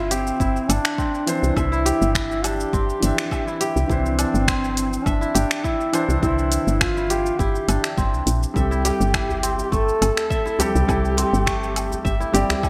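Organic downtempo at 103 BPM in C major, peaceful and gently swung, built on a Cadd9 chord that moves to Am7 at 8.6 seconds in this short cut from a longer piece. A distant, roomy duduk carries the folk-style melody with vibrato and scooped notes over fingerpicked, ringing kora arpeggios and a soft, felt-muted upright piano with 12-bit sampler grit, all three trailed by digital delay. A round, woody FM bass sits up front with sidechain pumping, while a deep, tape-warm electronic kick joins a deep house kit of finger snaps, metallic hats, shaker and woodblock, and a very quiet, cracking djembe enters at 8.8 seconds, all within a bright 1980s-style digital mix and a lush hall reverb.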